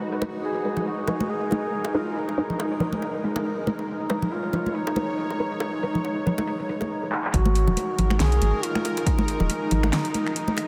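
Deep dubstep at 139 BPM in a half-time, swung feel, meditative and heavy, set in G# dorian and soaked in a vast ambient reverb for a dreamy haze. A mellow, distant duduk with vibrato and scooped notes carries the folk-style melody up front through gritty sampler texture and dub echo, over a bright, tense bowed-like drone holding G#m, muted nasal dub chord stabs with phaser and chorus in the background, close, dry hand-struck bongos and congas, and a deep house kit of fat snare, metallic hats, snaps and claps. After a drum fill at 7.1 seconds the drop lands at 7.3 seconds, where a punchy overdriven electronic kick and a round, soft sub bass join under a G#5 chord as this cut from a longer piece runs on.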